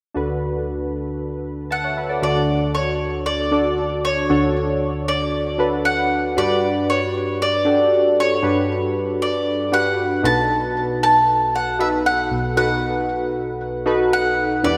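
Bathed in a lush, dreamy hall reverb, this uplifting and romantic pop passage, cut from a longer piece, opens on round, detuned analog keys with a chorus shimmer and a filter sweep, their fast-attack chords decaying as they accompany through the whole clip. At 1.7 seconds a woody, double-strung acoustic mandolin enters up front with the picked melody, its notes trailed by tape echo. The harmony settles on Dmaj7, moves to Gmaj7 at 6.4 seconds, and arrives on B7 at 10.2 seconds.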